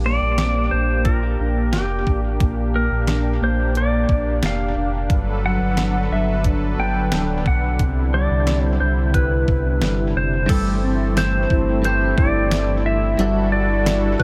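A twangy, bright lap steel guitar carries the melody up front with slide, volume swells and dub echo in this dreamy, blissful dream pop excerpt at 89 BPM. Beneath it sit a smooth, detuned sawtooth pad with chorus and tremolo, dark fingered electric guitar arpeggios through ensemble chorus and dub echo, and a deep, full sine-and-triangle sub bass with an octave. An 8-bit drum machine, re-recorded in a small room, plays a thumpy kick, snare, hi-hat, tambourine and crash, and from 10.5 s a scooped, compressed, direct-recorded clean guitar adds tremolo-laden accompaniment with analog chorus and echo in the background of an echo-heavy mix with light reverb.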